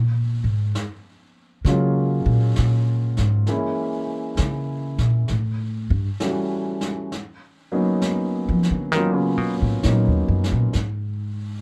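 A woody, growly pizzicato upright bass carries the solo from the first second of this wistful, smoky jazz ballad in Eb minor at 66 BPM with a swung feel, joined at 0.8 seconds by a distant, roomy brushed snare with a rolled-off top and at 1.7 seconds by an intimate grand piano with audible action noise and long sustain, all set in light reverb and a dark, warm production across chords moving from Gbmaj9 through Bbm7b5 and A7 to Ebm9.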